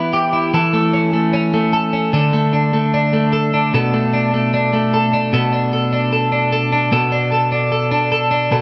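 Nostalgic and breezy, this short indie pop excerpt at 150 BPM features a solo twelve-string electric guitar, clean, picked and compressed, sitting up front with spring reverb in a moderate club room as it moves through Em, A/E, D5 and Bm7, shifting into a new section at 5.3 seconds before it cuts off at 8.6 seconds.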